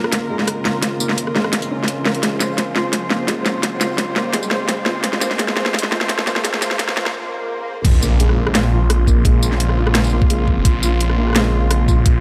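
A half-time 4/4 groove at 171 BPM drives this tense, cinematic drum and bass piece in Bb minor, where a dark, bowed cello section holds sustained chords with sidechain pumping alongside a knocking electronic kick, a felt-muted upright piano with audible action noise plays delayed arpeggios, and an overdriven, up-front drum kit cracks its snare amid bright hats, crash, rim click and tambourine through a build-up and drum fill, while very quiet risers, swells and impacts lead into a break at 7.1 seconds and a swirling, detuned saw bass with phaser arrives at the drop at 7.8 seconds.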